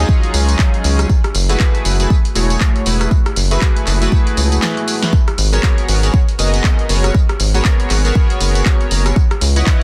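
A chorused polysynth and a rubbery square bass open this late-night deep house excerpt in G# minor at 119 BPM, with a 16th-note swing that keeps the 4/4 groove loose. The polysynth plays glossy, retro stabs built from pulse and sawtooth waves over a sub octave, carrying a filter sweep, vintage 12-bit sampler grit, tape echo and sidechain pumping. Beneath it, the hollow, nasal bass bounces with a resonant filter pluck and pumps with sidechain compression. From 0.1 seconds a deep, layered electronic kick sits up front alongside a punchy analog drum machine of handclaps, hi-hat, rim click, snare and tambourine, re-recorded in a small room, with a short room sound on the snare, clap and hats. The chords move from D#m11 to F#m11, and a drum fill at 4.6 seconds leads into G#m11, before a closing turn to C#m11, all under a dense, heavily limited modern master.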